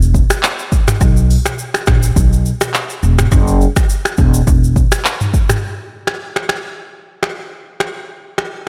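An upright bass plucked pizzicato, woody and up front, opens this breezy, joyful afrobeats excerpt at 104 BPM with a lightly swung sixteenth feel, alongside an electronic afro-pop kit of deep kick, crisp hats, finger snaps, handclaps, rim click, shaker and toms that carries on alone after the bass stops at 4.8 s, all under light reverb.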